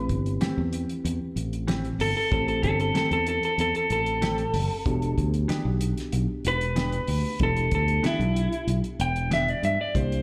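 A straight-eighth soul blues groove at 94 BPM in E minor carries a soulful, smoky clean electric guitar solo, slightly broken-up through a small old amp with slapback echo, over a round, punchy fingered bass, a cloth-damped thuddy drum kit with a fat snare and tight kick, a mellow tine electric piano with analog chorus sitting in the background, and dark, clean guitar stabs with slapback and digital delay from 0.4 seconds, all moving from Am7 to Em7 in the club reverb of a live gig heard through the venue's PA.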